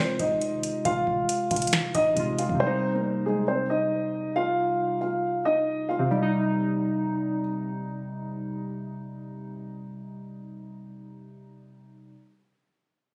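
Eerie and melancholic, this short cut from a longer hip hop and trap piece moves at 137 BPM in a half-time feel, sitting in C minor as the harmony shifts from Fm to Cm at 2.6 seconds. A dark, boxy concert grand piano carries the melody up front, its mellow, intimate tone revealing audible action noise and a deep low end before it drops out at 7.4 seconds. Warbling lo-fi synth keys with a detuned square and sawtooth character, a filter sweep and chorus supply a nostalgic accompaniment that continues alone until 12.1 seconds. A boomy 808-style bass with a sine body and a noise layer sits in the background. An analog drum machine with a deep kick, tonal snare, metallic hats and finger snaps, re-recorded in a small room, plays only briefly near the start. A lush hall reverb and the phone-captured room sound lend the whole a hazy, nocturnal atmosphere.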